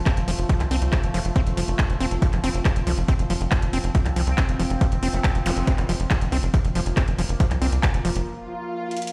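A punchy, layered electronic kick sits up front in this hypnotic, alien psychedelic trance excerpt, joined by a tight, nasal sequencer bass and a techno kit of handclaps and metallic hi-hats. In the background, a squelchy, distorted acid bass riff with dub echo and a filter sweep churns alongside a chorused, sidechain-pumped drone of moving overtones, while a very quiet, mellow vowel-sweep wobble bass appears from 2.4 to 5.3 seconds. An electronic zap punctuates the groove at 5.5 seconds, and a break at 8.3 seconds brings a swell and a drum fill, heard as if through a big sound system in a bare stone room.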